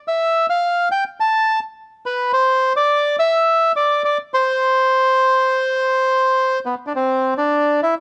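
A dark, warm production with light reverb frames this brief tango excerpt in C major, tuned to A4 = 439 Hz. A lone bandoneon sits up front, reedy and vintage with a band-limited tone, playing from 0.1 to 7.9 seconds across a range of B3 to A5. The mood is dramatic and sultry, moving at 105 BPM in 4/4 with a rubato feel.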